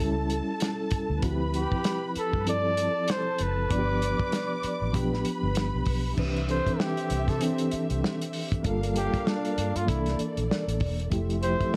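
This short cut from a longer track has a dark, warm production set in a small-room ambience. It's lush, smooth 1970s-style soul with a gentle swing on the sixteenths. A reedy, mellow electric piano with fast tremolo, heard through its built-in speakers, carries the chords over a foam-muted, round fingered bass. An up-front, dry and muffled acoustic kit with dark cymbals, a medium-tuned snare and a tight kick keeps time, while a woody, bowed string section adds a vibrato-laden second line behind them. The flugelhorn enters at 1.6 seconds, close-miked and soft in attack, with light vibrato, scooped notes and a slapback echo. From 6.2 seconds it takes a jazz-style solo as the harmony moves through Cmaj9, Gm9 and C13 to Fmaj9.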